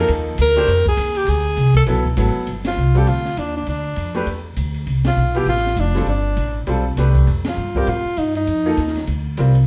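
A clear alto saxophone opens this searching, open modal jazz piece with a solo line full of vibrato and scooped notes, sitting up front over a woody pizzicato upright bass, a bright, brilliant upright piano and an acoustic kit with dark cymbals, a high-tuned snare and a boomy kick, all swinging briskly at 200 BPM in G mixolydian. The harmony drifts through suspended and extended chords such as Ebmaj7sus2, D13, G9sus4 and F9sus4, while the band hits accents at 2.6, 5.0 and 7.4 seconds. A wet studio reverb places the group further back in the room, and the recording is cut from a longer piece.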